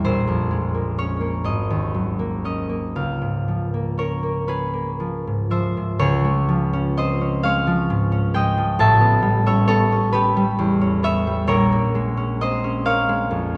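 Serene and graceful, this short classical excerpt for solo concert harp unfolds in a rubato 6/8 at roughly 38-45 BPM in dotted quarters, centred on Db lydian and spanning from Ab1 up to A5. The bright, ringing harp sits up front, fingerpicked through chords such as Bbm9, Db6, Dbmaj7 and A9, as a phrase heard from the start returns at 6.0 seconds. A wet concert hall reverb with a 2.1-second decay surrounds the instrument with the spacious air of a church or concert hall.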